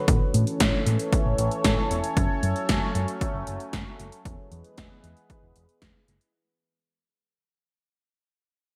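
Bright and upbeat, this short synth-pop excerpt moves at 115 BPM in E major, fading out throughout as a detuned, resonant sawtooth pad with chorus and phaser holds sustained chords over A, F#m and E. A dark, round fingered electric bass sits beneath a punchy, overdriven analog drum machine of kick, snare and hi-hat, which carries gated reverb and sits up front in the mix. A lush hall reverb and bright 1980s-style digital production give the whole a polished sheen.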